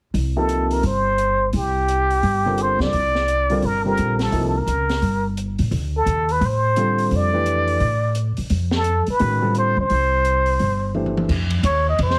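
Upright bass and an open jazz drum kit open this cool, hypnotic modal jazz excerpt together: the woody, growly pizzicato bass sits up front, while the small-room kit stays dark and smooth, with a boomy kick, a high-tuned snare and a drum fill near the end. At 0.4 seconds a plunger-muted trumpet takes the intimate solo melody, breathy and whispered with wah-wah, vibrato and a soft attack, as a present grand piano accompanies in two stretches, pausing between 4.5 and 6.8 seconds. The swung passage carries light reverb under a heavily compressed, radio-like sound, and it is cut from a longer piece.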